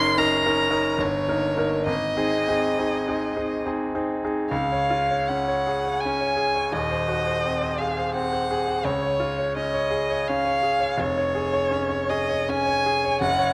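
Captured with close, detailed microphones, this short cut from a longer piece sits in a moderate scoring-stage reverb of 1.7 seconds. It is a romantic classical duo in triple metre, lyrical and serene, with a rubato feel that lets the pulse breathe. A warm, expressive bowed violin, played by one player, carries the melody up front in its upper register, shaded with vibrato and portamento and crowned by a smooth top. Beside it, a bright grand piano plays the accompaniment over a broad span from the deep bass up to the violin's lowest notes. The piano's tone is brilliant and polished, with long sustain and audible action noise that give it an intimate presence. Both instruments play throughout, and at 4.5 seconds a new section begins on a Db chord, unfolding until the close at 13.5 seconds.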